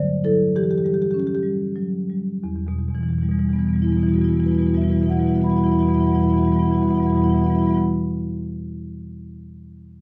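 A solo marimba played with soft mallets sounds woody, mellow and round in this flowing, reflective fragment of a contemporary classical piece in E minor and 6/8, moving freely at roughly 60-69 dotted-quarter beats per minute, slowing over the opening 2.4 seconds as Dadd9 and Em6 give way to Emadd9, its range spanning E2 to B5, heard up front through close, detailed microphones with light reverb.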